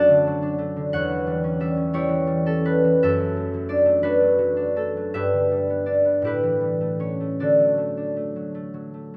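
Graceful and dreamy, this short classical passage for solo concert harp, cut from a longer piece, drifts in rubato 6/8 at roughly 51-61 BPM in D major, its fingerpicked, ringing acoustic tone sitting up front from E2 to A5 through close, detailed microphones and light reverb as the harmony moves from D/F# through C#dim/E, G and A7 to settle on D at 7.4 seconds.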